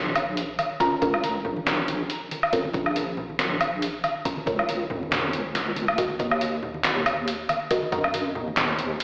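Meditative and brooding, this short cut from a longer deep dubstep piece moves with a half-time, lightly swung feel over a shift from Bbm to Ebm at 6.0 seconds. A deep, soft wobble bass holds the low end from the start, its square-and-sine tone dark and sustained, thickened by chorus and tube saturation. Close acoustic congas tucked into the background and trailed by dub echo enter almost at once, followed by a gritty, pitched-down trip hop sampler-style kit that sits up front with handclaps, hi-hat, a medium-tuned snare and woodblock. From 0.8 seconds a punchy, overdriven electronic kick and a muted, detuned chord stab arrive, the stab's filtered pluck softened by phaser, lush chorus and dub echo. The whole mix sounds as if played through a big sound system in a bare stone room, with echo-chamber reverb and an AM radio colour.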